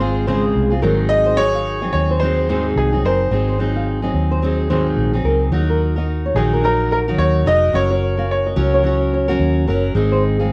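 Sunny and heartfelt, this acoustic pop excerpt moves at 108 BPM with a 16th-note swing, as a bright, woody upright piano carries the melody in plate reverb until 9.1 seconds over a full-bodied fingerpicked steel-string guitar, thumb-plucked flamenco guitar arpeggios with a cassette-tape tone, and a round, foam-muted vintage electric bass, all in a wet small room with a homespun cassette feel, as the chords move from Dbmaj7 and Ab7 to Ebm and Gb before landing on Ab.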